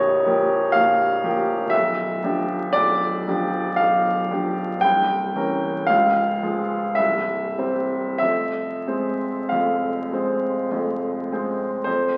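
Wistful and melancholic, this brief romantic nocturne for solo piano drifts in a slow, rubato 3/4 at roughly 44-62 BPM, taken from a longer piece. The baby grand sounds clear, intimate and natural, placed up front with audible action noise, and its harmony moves from Gm7b5/Bb through G7/B, C7b9, Db and C before settling on Fm near 8.2 seconds. A wet recital-hall reverb surrounds the piano, and the crackle of a very old 78 rpm record lends the sound an aged patina.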